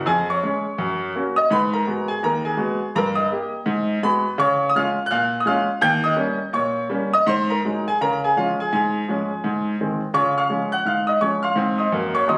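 A brilliant, up-front grand piano plays exuberant, playful solo stride jazz at 167 BPM in 4/4 with a swung eighth-note feel, settling into Db major from 4.4 s and tuned slightly sharp to A4 = 445 Hz, in a 12.4-second cut from a longer piece that sounds captured on a phone in a small booth-like room, with club reverb, compression and a dulled top end.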